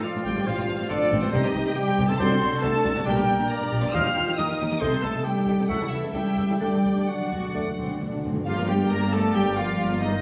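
A lush, bowed violin section carries the melody in this stormy, restless fragment of a dramatic romantic orchestral movement, with rubato and warm vibrato. Flute, a distant clarinet, oboe and a second violin section weave second lines over a dark bassoon, rich violas, mellow French horn chords, very quiet ringing harp arpeggios, and cellos and double basses holding the bass. Round soft-mallet timpani fill in from 6.6 seconds, clear trumpet stabs arrive at 8.5 seconds, and a wet recital hall reverb surrounds the ensemble.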